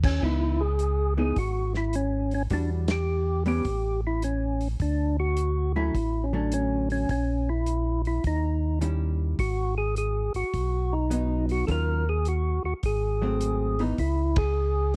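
A soul jazz organ trio opens at once, with a percussive tonewheel organ carrying the melody over an overdriven tonewheel organ bass and a soul drum kit, all in a late-night, bluesy C# minor swing at 105 BPM in 4/4. The lead organ sounds fat and lightly overdriven, its third-harmonic percussion and vibrato turning through a slow rotary speaker, while the bass organ is round and mellow, colored by chorus vibrato and the same slow rotary. A dark, clean hollow-body jazz guitar enters at 0.2 seconds with picked, compressed accompaniment, sitting a little behind the organs and dropping out at 14.0 seconds. The acoustic drums are mid-forward with dark cymbals, a medium-tuned snare and a tight kick, their top end rolled off. The band hits accents together at 2.8 and 14.3 seconds as the harmony moves from C#m9 through richer sevenths and altered dominants back to C#m, all captured in a dry, close 1970s-style studio sound with a small room reverb, cut from a longer piece.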